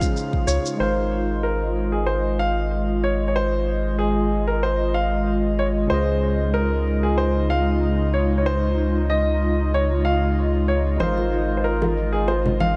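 A clear, up-front grand piano carries the melody with a touch of delay over a barky tine electric piano in the background and an airy, breathy pad with chorus in this blissful sunset chillout excerpt at 94 BPM in Ab major with a gentle 16th-note swing, while a filtered electronic shaker ticks throughout, a round, deep analog bass enters at 0.5 s, soft-handed vintage congas and bongos join at 11.0 s, and a lush hall reverb bathes the mellow Dbmaj7 to Ab6 harmony.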